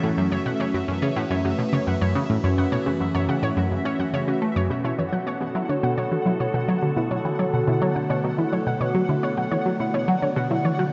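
A straight 4/4 pulse at 106 BPM drives this hypnotic, cosmic slice of sequencer-driven ambient space music, cut from a longer piece. Up front, a tight sequenced synth built from detuned sawtooth and triangle tones plays a driving low riff with a fast-attack filter pluck, colored by chorus, phaser and delay. Above it, a bright, morphing wavetable pad holds sustained chords with a slow attack and long release, drifting through phaser and its own reverb, while a warbling, lo-fi pluck with a noise layer and short decay traces arpeggios through chorus, cassette tape grit and delay. High in the register, a pulsing, tempo-synced gated texture of unison detuned triangles shimmers quietly under chorus and reverb. The harmony moves from F#m7 to Bm7 at 4.7 seconds. A wet plate reverb with a 2.4-second tail and an echo-heavy mix that rolls off everything above 7.8 kHz give the whole passage a soft, distant haze.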